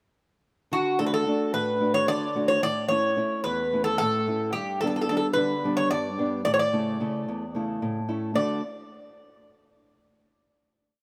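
In a straight 7/8 at 220 BPM counted in eighths, this short, relaxed Greek folk piece in D major sets a picked bouzouki, metallic with doubled and partly octave-doubled strings, up front on an ornamented modal melody, over a small, fingerpicked nylon-string guitar playing an oompah of bass notes and chord figures through D, A and G, both parts stopping at 8.6 seconds as a final D chord rings in a moderate plate reverb until 10.3 seconds.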